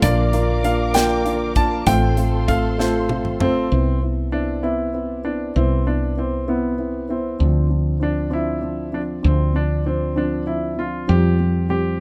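A rough home-demo mix in a small room carries this tender, swaying six-eight pop ballad in C major at 65 BPM, cut from a longer piece. A clear, polished baby grand sings the melody over a mellow, slightly detuned upright piano with audible action noise, while a round, woody fretless bass sits up front with a lush chorus. Veiled, con sordino strings, a very quiet twangy clean electric guitar playing arpeggios and a punchy, airy drum kit fill out the opening, with a drum fill from 2.8 s before the drums drop out at 3.5 s and the strings and guitar at 3.7 s, as the chords move from Bb through Cmaj7 and Dm7 to Fsus2.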